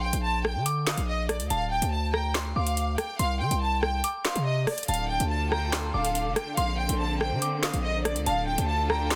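Ominous and cold, this drill hip hop excerpt moves at 142 BPM with a half-time feel in D phrygian: a lush studio violin section with vibrato carries the melody up front, while a soft, warbling FM synth bell with chorus and digital delay traces a second line above it. Underneath, a distorted 808-style bass sits heavy and saturated, and an up-front electronic drill kit of handclaps, metallic hi-hats, rim clicks and a woody snare enters at 0.1 seconds. At 4.9 seconds a distant symphonic string section joins with clear, bowed sustained chords, and the mix is a dense, heavily limited modern master with digital ambience.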